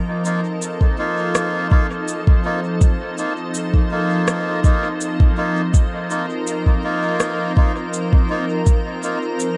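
An echo-heavy mix with light reverb and a top end capped at 10.6 kHz frames this spacious, peaceful ambient dub excerpt at 82 BPM in F mixolydian. A bright, pure, organ-like pad holds a sustained F7sus4 chord with slow attack, ensemble chorus and a long release. Reedy, breathy melodica stabs trail off in dub echo over tape-warm electronic cabasa and rim click, also echoed, while a soft electronic kick drum sits up front from 0.8 s.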